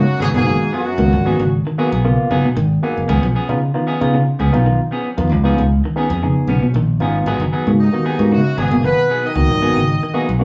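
A lightly swung sixteenth-note groove in four drives this funky, intense afrobeat excerpt, anchored by a direct, up-front fingered electric bass. A barky tine electric piano carries the accompaniment throughout. One clean electric guitar picks bright arpeggios in the background, while a second, warmer guitar adds picked stabs from 0.2 seconds. The harmony moves between a minor seventh chord and a dominant seventh chord. A punchy horn section states the melody with clear vibrato, backed on second lines by a brilliant, tight trombone section and an edgy, forceful alto saxophone set in the background; the horns play only until 1.5 seconds and return at 7.8 seconds. The band sounds as if it is playing live together in a small room, dressed in a wet studio reverb.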